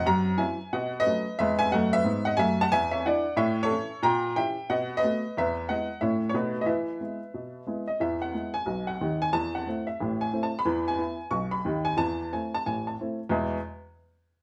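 A woody, slightly detuned upright piano sits up front and plays alone from 0.0 to 13.6 s in this swinging, playful stride jazz passage cut from a longer piece, moving through changes such as F#7, B9, E13 and Am/E with short sustain and a moderate studio reverb that gives it the feel of a live room.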